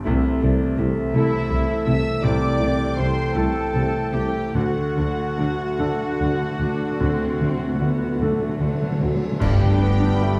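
In a slow, rubato 12/8 at around 48-56 BPM, this brooding, tragic romantic movement for piano and orchestra puts a clear, open concert grand up front on the melody, with deep bass beneath, while a very quiet violin section floats a second melody high above. Dark violas accompany in the background as cellos, double basses and a distant tuba hold the low end under sustained chords from dark French horns and very quiet mellow trombones, and a bright clarinet, airy flutes, a present oboe and a violin line weave second lines in the background. A timpani fill enters at 4.6 seconds, and dark cymbals and bass drum arrive at 4.5 seconds, leading to a full-band accent on G at 9.4 seconds, where a bassoon joins, all set in a wet scoring-stage reverb.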